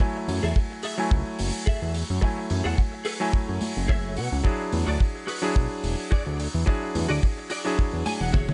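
A fat, thick analog bass with a detuned sawtooth edge, tube saturation and sidechain pumping sits up front from 0.3 seconds, its fast attack decaying under a filter sweep in this sensual, sleek nu-disco excerpt at 108 BPM in 4/4, with a light 16th-note swing in F# minor. From the start, a vintage electric grand piano with a clangy low end and short sustain plays up-front accompaniment through a low-pass filter and analog delay, while a clean, picked electric guitar, recorded direct and compressed, carries a riff through ensemble chorus and its own analog delay, adding fills at 3.6 and 7.8 seconds. A tight, polished kick drum drives the groove up front, joined at 0.3 seconds by a damped 70s kit of hi-hat and toms, dry and airy, which adds a fill at 8.3 seconds. Ringing congas played with soft hands sit close yet in the background. The harmony moves from F#m9 to E9, all held in a small room with a soft, rounded top end.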